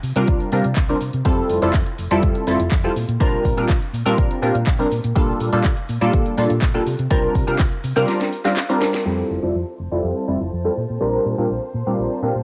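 Filtered disco house at 123 BPM in F major, joyful and funky, built on an up-front, detuned sawtooth polysynth comp with chorus, phaser and sidechain pumping over a dark, round hollow-body fingered electric bass, a punchy overdriven electronic kick, a cassette-toned house kit of cracking snare, bright hats and handclaps, and a very quiet tube shaker; a drum fill from 8.1 s leads at 9.1 s into lush, vintage string-machine chords with ensemble chorus and 12-bit sampler grit under a filter sweep, all in a moderate spring reverb with a homespun cassette sound.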